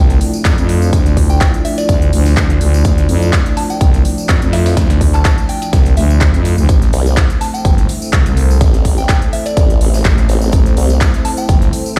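A big, reverberant sound fills this bouncy, gritty bass house excerpt, as if played through a large system in a bare room, with a punchy, up-front electronic kick arriving at 0.4 seconds over a thick, growling FM bass with overdrive and sidechain pumping. Crisp hand claps and hats from a big-room dance kit sit alongside a background layer of dusty sampler-style hi-hat, snare and tambourine, plus a jingly acoustic tambourine, while a dark, detuned analog pad holds moody chords under a very quiet, warbling lo-fi pad with a nostalgic tint. A soft, pure synth bell carries the melody with chorus and digital delay, and from 6.9 seconds a wobbling formant-sweep bass with tube saturation joins as the harmony moves from Dmadd9 to Am.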